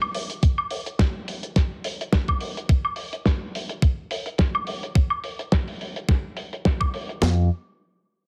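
A damped 70s drum kit opens this cosmic, groovy nu-disco cut at 106 BPM, its dry hi-hat, snare and woodblock softened by a rolled-off top and studio reverb, joined at 0.4 seconds by a thumpy, overdriven 12-bit drum machine kick and snare sitting up front. At 7.2 seconds a fingered electric bass with an envelope filter enters briefly on F2, pumping against the sidechain with a direct-and-amped warmth. The whole excerpt carries a heavily compressed, radio-like sheen with light reverb, swung gently on the sixteenths.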